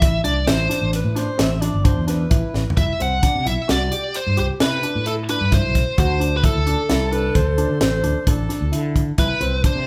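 A biting, overdriven lead guitar carries the melody up front in this driving, intricate progressive band piece in 7/4, joined from 0.9 s by a close-miked, bright alto saxophone playing a jazz-style second line with vibrato. A growly, amped fretless bass and a dry funk drum kit with a high-tuned snare and tight kick sit up front, while a warm grand piano spins arpeggios beneath, all sounding like a band playing live in one large studio room. A drum fill at 2.5 s leads into a new section at 2.8 s, where the harmony, having opened on Amadd9, moves through Cmaj7 and D7(no3) before returning to Cmaj7 in this excerpt cut from a longer piece.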